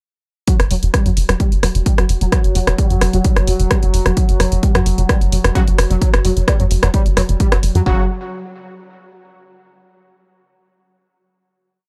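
An up-front, tape-warm four-on-the-floor kick drives this dark, hypnotic peak-time techno piece at 130 BPM, joined by a tight, rolling sixteenth-note sequencer bass, programmed analog drum machine hats and rim clicks, and a screaming, guitar-like overdriven synth lead repeating a 16-step sequence under a filter sweep with tape echo; an evolving, chorused analog drone enters at 1.6 seconds and sparse, detuned supersaw chord stabs at 5.6 seconds, with the bass, lead, drone, stabs and hats pumping against the kick before a final chord at 7.9 seconds, all in a dry, gritty hardware sound.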